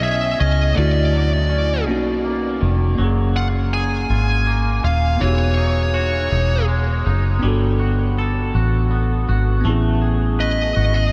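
R&B in a straight 6/8, intimate and tender, moving through major-ninth chords inside a dreamy mix soaked in huge ambient reverb. A fuzzy, distorted lead guitar carries the melody with tape echo, falling silent at 6.6 seconds and returning at 10.4, while a twangy, compressed clean guitar with subtle chorus plays a second line alongside it. A bell-like tine electric piano supplies bright accompaniment, and a round, foam-muted vintage bass sits dark and punchy up front.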